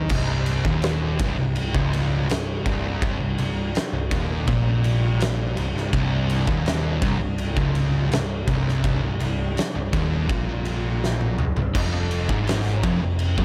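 Stoner and doom metal with an ominous, sludgy mood, this cut from a longer piece is driven by an oversized, low-tuned acoustic drum kit sitting up front with a boomy kick, fat snare, dark cymbals and a pumping big-room sound, alongside a growly, punchy overdriven electric bass. Two thick fuzz guitars play the riff, one in the background and the other dark and very quiet, while a faint, eerie metallic FM drone with chorus holds sustained chords beneath them. A drum fill at 11.0 seconds leads into a move from C minor to F5, where a double-tracked, compressed overdriven electric guitar enters very quietly at 11.7 seconds.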